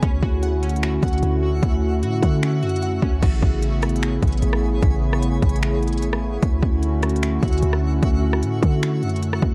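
Dark, warm digital ambience surrounds this floating, dreamy cloud-rap hip hop excerpt in a half-time feel, where a hollow, flute-like pad pumps with sidechain alongside a deep, boomy 808-style bass and an up-front trap kit of hard-clipped kick, crisp hats, finger snaps, rim clicks and crash, while glassy, wave-folded digital keys arpeggiate through chorus and delay until 3.2 s and a faint twinkling granular layer sparkles above in its own reverb as the chords move from Dmaj9 to Amaj9 and back.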